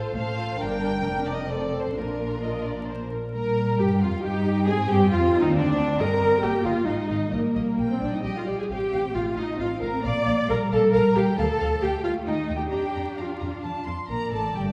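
Spirited and graceful, this quick classical-period excerpt for string orchestra moves in 3/4 at 134 BPM with a rubato feel, shifting from Bb major to Eb major at 3.3 seconds and back at 8.7 seconds, as a smooth, distant violin section carries the melody over a lush second violin line, an up-front, focused viola accompaniment, and a bass of close, portamento-tinged cellos and prominent double basses, all set in a recital-hall reverb with vinyl crackle.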